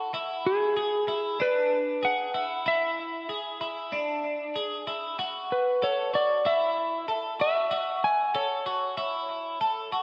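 A steady, straight 4/4 pulse at 95 BPM carries this ethereal dream pop excerpt in A major, where a bright, twangy twelve-string electric guitar plays up-front arpeggios with subtle chorus and tape echo from 0.0 seconds, while a dark, clean lap steel guitar enters at 0.5 seconds with a fingered slide melody through tape echo, the pair moving from E7 to A6 inside a dreamy mix soaked in a plate reverb.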